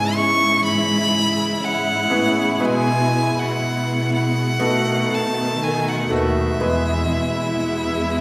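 Bathed in the wet reverb of a recital hall, this heartfelt, emotional pop ballad excerpt at 60 BPM in E major sets an intense, up-front solo violin with airy bow and vibrato over a polished concert grand piano with audible action noise, a lush studio string section holding sustained chords, a very quiet picked steel-string acoustic guitar playing arpeggios with finger squeak, and a dark, woody chamber cello section carrying the bass through a progression from E6/G# to E/B and B7 before settling on E.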